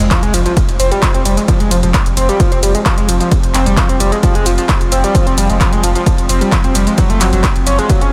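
A screaming, gritty synth lead built from sawtooth and pulse waves rides up front with distortion, chorus, vibrato, cassette-tape coloring and analog delay, driving a riff through this dark, industrial slice of peak-time techno at 131 BPM in F minor. Beneath it sit a punchy, tape-warm analog kick and a thick, saturated sine sub bass with sidechain pumping, while an overdriven, layered kit of handclaps, hi-hat, ride cymbal and shaker fills out the groove. A warbling, vintage drone evolves in the background, a very quiet sub drop marks an impact in the opening 1.5 seconds, and the harmony shifts from F5 to Gb5 at 7.0 seconds within a light reverb.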